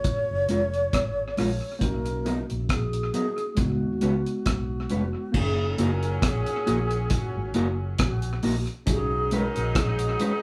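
Sweet and tender, this short lovers rock reggae excerpt sways at an easy, lightly swung pace, with a bright wooden-headed alto flute carrying the melody in an airy, soft-attacked voice touched with vibrato. Beneath it, a deep reggae drum kit sits up front with a dry, dark sound, a tight kick and a rolled-off top, marking time with hi-hat, rim click and crash cymbal. A vintage muted fingered electric bass enters at 0.3 seconds, round and punchy with an amped, foam-muted tone, while a mellow electric guitar adds clean, fingered stabs from 0.5 seconds. A worn, slightly out-of-tune tine electric piano supplies accompaniment from the background, and at 5.3 seconds a clear horn section arrives with a smooth-topped, pop-style second line and light vibrato as the harmony moves into its second passage. The band sounds as if playing live together in a small room, with light reverb giving the lush extended chords an intimate glow.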